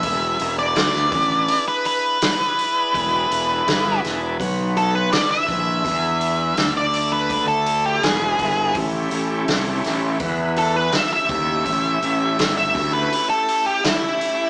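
A dark, octave-fuzzed lead guitar solos up front from the first second over a shouting tonewheel organ with key click and slow rotary swirl, a punchy, overdriven fingered bass that drops out at 13.1 s, and a vintage kit with a rolled-off top, giving this driving, gritty blues rock and southern rock power-trio excerpt a live, small-speaker sound in a stone room.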